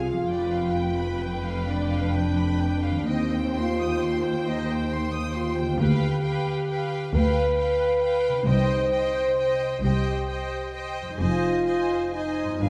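Set in a moderate scoring-stage reverb, this solemn, yearning fragment of a slow romantic orchestral movement in C minor moves in a rubato 6/8 at 44 BPM, with a smooth, lightly vibrato violin melody above a clear, intense second violin line and focused violas, mellow French horns holding prominent sustained chords, a ringing thumb-plucked harp arpeggiating in the background, rich bowed cellos and double basses carrying the bass, and a very quiet, round timpani note sounding at 8.5 seconds.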